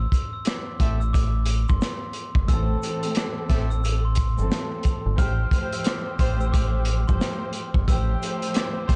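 Moody and gritty, this boom-bap hip-hop excerpt swings on a saturated, crunchy breakbeat kit and a round, punchy dub bass sitting up front, with a very quiet, grainy egg shaker and an airy, bell-like glockenspiel melody from soft plastic mallets ringing above. A clear trumpet section adds jazz-style stabs in the background with tape echo from 0.8 seconds, and a lush, bowed string section with expressive vibrato and a cassette-tape tint enters at 2.5 seconds. Small room ambience and a dark, warm production with muted highs round out the recording.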